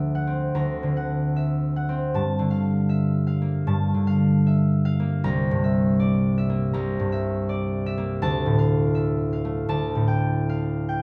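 Rubato and unhurried in a gentle 4/4, this mysterious classical excerpt features a solo concert harp, fingerpicked and up front with a ringing, warm tone in light reverb, drifting from an opening Daug7 through Gm9 and C9 before settling on Dm and Dsus4 across its 11 seconds.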